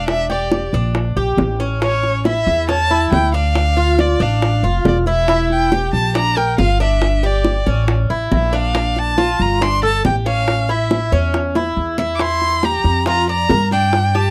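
A straight 4/4 pulse at 139 BPM drives this short, danceable cut of Cuban son and guajira, nostalgic in mood and drawn from a longer piece. Round, low-tuned bongos enter at 0.1 seconds with an acoustic small-room sound, and a drum fill breaks through from 11.6 to 12.2 seconds. Underneath, the upright bass is plucked on gut strings, woody, dark and thumpy, sitting up front in the low register. The Cuban tres plays arpeggios on picked double strings, some doubled at the octave, giving a metallic sparkle, while a single bowed violin carries the melody close and expressive, with vibrato, a soft attack and portamento. The harmony moves through minor and diminished colours such as Em7b5, Dm and Edim alongside A and Bb, and the dry, close studio sound has a 1970s character with little reverb.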